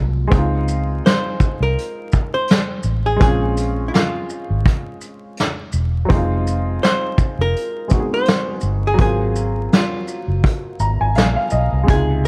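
Vinyl crackle and a small-room ambience with light reverb frame this melancholic, reflective lo-fi hip hop excerpt, where up-front acoustic brush drums with a punchy kick and rolled-off top sit alongside a dark, foam-muted fingered electric bass and a clear, worn, slightly detuned upright piano with cassette-tape colour moving through Dbmaj9, Bbm9, Fm7 and Ab13, while a clean, hollow-body archtop guitar enters at 1.1 seconds with a picked melody and the piano adds a fill at 10.4 seconds.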